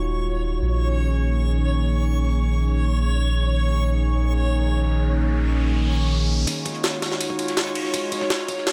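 This raw, nostalgic drum and bass excerpt with a jungle edge opens on a warbling, detuned tape-like pad of sustained chords, coloured by chorus and its own reverb, while a filter sweep runs across it. Beneath the pad, a deep, round dub sub bass holds the low end up front, and a reversed, granular texture swells dreamily high above. An electronic riser enters at 4.4 seconds and climbs until the drums arrive. At 6.5 seconds, two drum kits arrive together for a build-up. Up front is a compressed, pitched-up sampler-style jungle kit with a thumpy kick, a high-tuned snare and ride cymbal, re-recorded in a large room. Behind it sits a muffled, lo-fi acoustic kit of hi-hat, fat snare and tambourine with a rolled-off top, all inside a light, small-room ambience.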